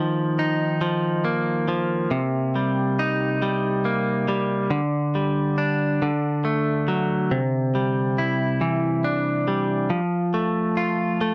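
Pop in a slow 6/8 at 46 BPM counted in dotted quarters, this short section cut from a longer piece carries a dramatic, melancholic mood. A lone clean electric guitar, recorded direct and picked, plays the whole passage from 0.0 to 11.3 s, moving between C3 and F4. Its tone is bright and twangy with a scooped middle, compressed and placed up front. The harmony moves from Ebsus2 through Cm7, G5/D and D, then settles on Cadd9 before reaching F at 9.9 s. The sound is dry and close, with little reverb, in the manner of a 1970s studio recording.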